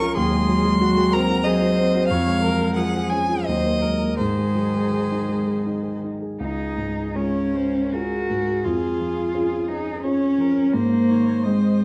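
Classical slow romantic movement for piano quartet in Db major and 3/4, lyrical and serene, moving at a rubato 75-95 BPM across this 11.8-second fragment of a longer piece, with a new section arriving at 6.4 s. A clear, smooth, even violin sings the melody with vibrato from close by, while a woody, dark cello carries a prominent second line. A rich, focused viola and a mellow, up-front concert grand with deep bass and a vintage tone fill out the accompaniment. The whole sits in a wet stone room with a faint mains hum beneath.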